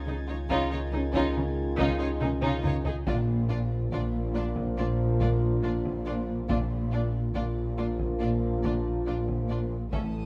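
A lush, expressive studio violin section carries the melody of this mysterious, eerie suspense-film cue at 70 BPM, over a smooth second violin line, distant violas, a very quiet cello riff, dark, woody cellos and close double basses, a deep sub bass drone, mellow French horn and roomy trombone sections holding sustained chords that move from C#add9 to A# at 3.1 seconds, band-limited taiko drums struck with hard sticks that fill at 2.2 seconds, a focused high violin texture, and a bright, ringing Celtic harp entering at 4.3 seconds, in a moderate scoring-stage reverb.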